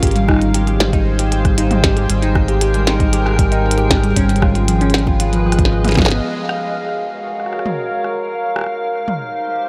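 A straight 4/4 pulse at 116 BPM drives this wistful, glitchy IDM fragment, cut from a longer piece. A deep electronic kick sits beneath a glitchy kit of clicky hi-hats, rim clicks, a tiny snare and toms, with studio reverb on both and delay added to the kit. A round, dark analog bass holds a single low Ab up front, while a harp-like synth pluck rings out soft, mellow arpeggios through chorus and digital delay. Above them a glassy FM pad sustains ethereal chords with a slow attack, ensemble chorus and sidechain pumping, moving from Eb6/Ab to Db7/Ab. A drum fill from 5.7 seconds and a band accent at 6.1 seconds close the opening section, after which the kick, bass and pluck drop out and the pad and kit carry on alone, the harmony settling on Gbmaj7/Ab before returning to Eb6/Ab, all within a light reverb.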